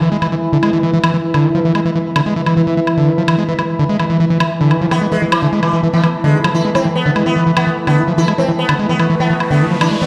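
A screaming, distorted acid line sits up front through the whole of this intense psychedelic trance excerpt, its squelchy, resonant sawtooth riff carrying a filter sweep, chorus and digital delay over a straight 4/4 pulse at 147 BPM, tuned to A4 = 441 Hz. Beneath it, an overtone-sweeping drone holds sustained chords in the background, its moving overtones and slow attack softened by chorus and built-in reverb, while a cloudy, detuned granular pad enters at 0.4 seconds to add a bright, blurred texture high above. An electronic, tape-tinged woodblock supplies the drums from 0.2 seconds, set in a small room ambience. At 4.9 seconds a plucked sitar takes up the melody, buzzing with sympathetic strings and shimmering through phaser and delay. A background riser appears at 9.0 seconds, and the whole mix rings out through a wet plate reverb and the stony echo of a big sound system in a bare room.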